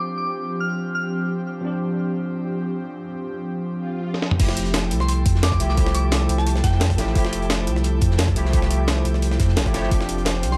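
A dreamy, reverb-soaked mix opens this liquid drum and bass excerpt, where a barky tine electric piano through a combo amp and an airy, breathy pad hold a G7sus4/F chord while a soft, warbling FM synth bell with tape echo adds brief melodic phrases. An electronic swell builds, and at 4.1 seconds a gritty, pitched-up sampler-style breakbeat kit with low-pass filtered cymbals, snare, hats and toms enters with a drum fill. The drop lands at 4.4 seconds on Fmaj9. It brings in a deep, round sine sub bass up front, a punchy layered electronic kick, and a dark, saturated acoustic breakbeat kit tucked in the background.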